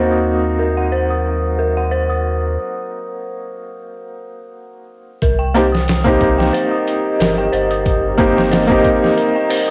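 A felt-muted upright piano, soft and intimate with audible action noise, accompanies this hypnotic, brooding trip hop excerpt in C minor at 91 BPM, with an eerie, inharmonic synth bell arpeggio, a round sine sub bass, a deep, warbling ambient pad under a filter sweep in the background, and gritty, pitched-down sampler drums entering at 5.2 s, all heard through cassette tape in a small room.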